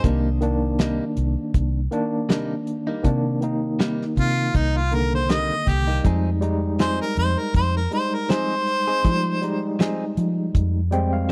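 A smoky, brooding straight-eighth soul blues in C minor at 80 BPM opens with an up-front harmonica melody full of vibrato and scooped notes over a barky, gritty tine electric piano with fast tremolo through a combo amp, clean compressed direct-recorded guitar stabs, a round, punchy foam-muted bass and a thuddy, cloth-damped drum kit with a tight kick and rolled-off top, all in a dry, close 1970s-style small room, as the chords move from Cm7 to Fm7 at 6.0 seconds, the harmonica stops at 9.8 seconds and the electric piano plays a fill from 10.5 seconds.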